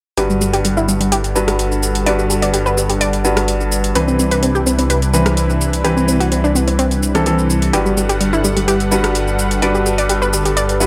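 Set in a light digital reverb, this uplifting, expansive progressive house cut moves at 127 BPM in a straight 4/4 in G major, its chords shifting from Gmaj7 to Cmaj7 at 4.0 seconds and back to Gmaj7 at 7.7 seconds. A deep house kit with metallic, overdriven hats, rim clicks and shaker sits under a dark, rumbling detuned saw bass placed up front, while a round, warbling analog pluck plays arpeggios through chorus and tape echo. Brilliant baby grand piano stabs, low-pass filtered and echoed, join from 0.2 seconds, and a lush, airy unison pad with chorus and phaser sustains chords from 0.5 seconds.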